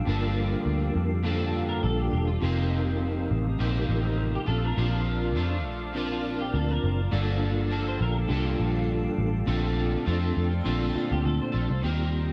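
This laid-back, hazy slice of indie and bedroom pop opens at once with two electric guitars, a blurred granular cloud pad and, a moment later, a mellow tonewheel organ and muted picked bass, all settling into an easy 102 BPM groove in Bb major with a light sixteenth-note swing. The dark, round, foam-muted bass sits up front. The bright, twangy accompanying guitar teeters at the edge of break-up, its ensemble chorus and warbly pitch drift adding a seasick wobble. Above it, a second guitar through a small old amp plays a lo-fi, compressed line in a narrow upper range, coloured by chorus and digital delay. The flute-like organ, with key click and a fast rotary speaker, has a cassette-tape tint, while the evolving pad hovers in the background wrapped in its own reverb. The harmony drifts through Gm9, F9sus4, Bbmaj7 and back to Gm9 before landing on Bbmaj9, with the pad and second guitar stopping at 11.8 seconds and the rest carrying on to 12.3 seconds in this short cut from a longer piece.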